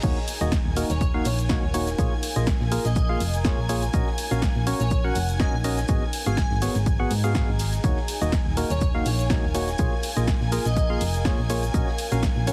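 Piano house with a soulful, energetic lift, cut from a longer piece, where a punchy, tape-warm electronic kick and a house drum kit of crash, hi-hat, ride, shaker and snare sit over a round, dark FM bass. A hollow, mellow organ stab riff with chorus and delay, lush sustained violin chords and a warbling, nostalgic lo-fi pad add color. A very quiet acoustic shaker and high-tuned snare, heard in a small room, sit underneath, and an airy, dreamy lead drifts in the background from 0.9 to 11.1 seconds, while the bass, organ, violins and pad pump against the kick in a heavily compressed, radio-style mix.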